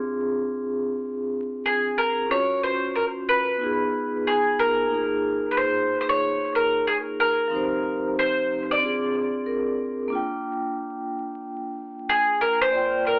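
Soft-mallet vibraphone opens this cool, relaxed hip hop excerpt, its ringing, airy tone carrying a slow motor vibrato as it lays down accompaniment from F3 to G5. At 1.7 seconds a bowl-back mandolin enters with the melody, its picked double strings sounding acoustic and mellow within a narrow span from Ab4 to D5, touched by an analog delay. The groove sits at 92 BPM in 4/4 with a swing of 61% on the sixteenths, tuned to A4 = 438 Hz, and the harmony drifts through colored chords such as a rootless Bb9/C, Dbadd11, Abm6 and Bb7sus4 before closing on a rootless Ebmaj9. The vibraphone adds a brief fill from 9.1 to 10.1 seconds, and both parts sit up front. A moderate studio ambience frames the pair, while vinyl crackle and a telephone-style filter give the whole recording a dusty, lo-fi character.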